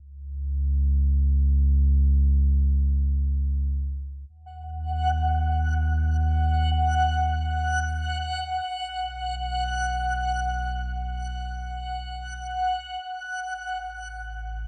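This reflective, melancholic ambient piece, cut from a longer work and moving in free time with tuning set to A4 = 441 Hz, opens on a deep, round sine sub bass sitting up front, its fast attack giving way to sustained tones thickened by tube saturation. At 4.9 seconds a reversed, dreamy texture enters high above, a detuned, granular triangle tone with a soft attack that swells and sustains, its bright edge bathed in its own reverb and a shimmer reverb. The harmony drifts from a chordless opening through D#m and then B5, and the sub bass fades out across the first 13 seconds. At 13.0 seconds the high texture stops, leaving the low bass alone for the brief closing passage. A moderate concert hall reverb and a cassette tape sound lend the whole a hazy, intimate melancholy.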